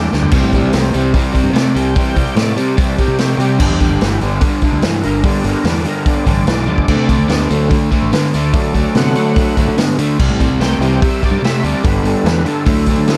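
Blues rock and southern rock in a power-trio vein, this driving, gritty excerpt runs at 146 BPM in G major, with a thick, overdriven tonewheel organ taking the solo on sustained chords through chorus vibrato and a slow rotary speaker over a C, G, D progression. A crunchy, double-tracked picked guitar riff sits up front beside a growling, bright fingered bass with its own overdrive, while a vintage acoustic kit with dark cymbals and a punchy kick drives the groove and throws in fills at 0.1 and 6.7 seconds. The whole is set in a light studio reverb.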